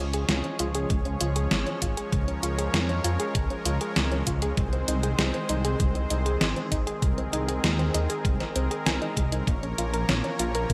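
Cinematic and nocturnal, this synthwave excerpt at 98 BPM sets smooth, sidechain-pumped supersaw chords over a deep, rumbling detuned saw bass, with a soft, round pluck arpeggiating through chorus and digital delay, a fat-snared 8-bit drum machine with hi-hat under gated reverb up front from 0.1 s, and a thumpy electronic kick joining at 0.9 s, all moving from Db to Ab to Bbm in a bright 1980s-style digital production.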